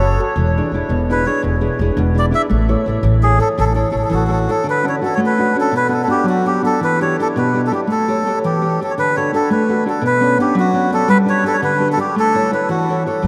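A lilting 6/8 sway with a straight feel carries this sunny, romantic Italian folk serenade, a short section cut from a longer piece. A reedy, breathy melodica sings the melody up front, its nasal, plastic-cased tone sitting in a modest middle register. Beside it, a dark, fingerpicked nylon-string guitar plays classical-style accompaniment across a broader range. A woody, pizzicato upright bass with steel strings holds the low end until 4.5 seconds, then drops out and reappears only at 13.2 seconds. From 4.7 seconds the harmony moves into a new passage that drifts through chords such as Dmaj7, Bm, Em7 and Bmadd9, all bathed in a huge, wet ambient reverb that places the trio in a vast, echoing space.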